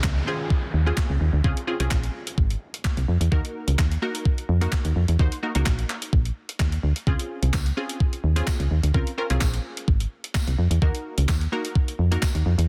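This is a dense, heavily limited modern master with little reverb, a euphoric and summery dance-pop excerpt at 128 BPM in 4/4 with a straight feel, set in Db major and alternating between Dbmaj7 and Ebm. Up front, a clean 12-bit digital drum machine supplies a thumpy kick, a medium-tuned snare, handclaps and hi-hat, its sampler-style hits overdriven and re-recorded in a small room. A round, dark FM bass with a fast attack and decaying notes sits equally forward, pumping with sidechain compression, while punchy, full-bodied chord stabs built from detuned sawtooth and pulse waves carry a bright filter pluck, a chorus shimmer and the same sidechain pumping. A background downlifter sweeps through the opening until 3.3 seconds. From 7.5 seconds a jingly, distant tambourine joins from a large room, tucked far behind the mix.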